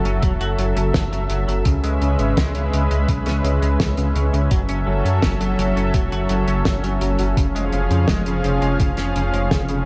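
A dark, rumbling detuned saw bass and a thick, warbling pad pumping under sidechain lead this moody, cinematic synthwave excerpt in straight 4/4, joined by a thumpy electronic kick, a dry 70s kit with a fat snare and hi-hat, and a clean, picked semi-hollow guitar riff set back in lush chorus and tape echo, all moving through F#m7 and C#m7 before settling on C#/E# at 7.4 seconds in a small room with a dark, warm sheen.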